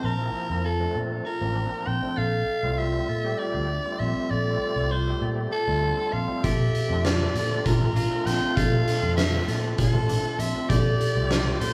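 Driving and bright, this progressive instrumental excerpt moves in an uneven 7/8 with a straight feel, as a raspy, edgy soprano saxophone carries the melody up front with vibrato and a touch of digital delay, over a reedy tonewheel organ with key click, chorus vibrato and fast rotary speaker, ringing hard-mallet vibraphone arpeggios and a fretless electric bass, moving between Bbmaj7 and Fadd9/Bb. At 6.4 s an oversized, low-tuned drum kit enters up front with a punchy kick, fat snare and hi-hat in a muffled, lo-fi, saturated sound, while a twangy, slightly broken-up electric guitar adds a fingered, compressed second line in the background. The band plays live together in one large studio room with a wet reverb.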